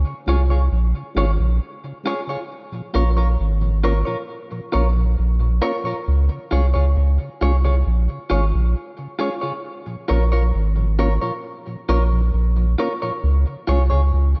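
A soft, flute-like tonewheel organ sits in the background through a slow rotary speaker while a deep, round sub bass holds the front, opening this serious, meditative reggae passage at 67 BPM in Bb minor. From 0.3 seconds a dark, clean electric guitar, picked and compressed, adds lush chorus and tape echo as the chords move between Db and Bbm. The straight 4/4 groove comes in a rough home demo mix with light reverb, cut from a longer piece.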